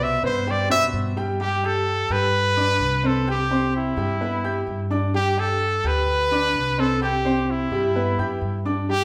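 Relaxed and warm, this excerpt of Cuban son and guajira moves at a straight 128 BPM in 4/4, with an up-front trumpet carrying the pop-style melody in a bright, smooth-topped tone with vibrato, taking a solo in the opening 1.4 seconds. A clear, boxy grand piano plays short-sustained arpeggios over the alternating Gsus2 and Cmaj7 chords, while a woody, growly pizzicato upright bass sits low and dark beneath. The band plays live in one large studio whose wet reverb surrounds the whole group.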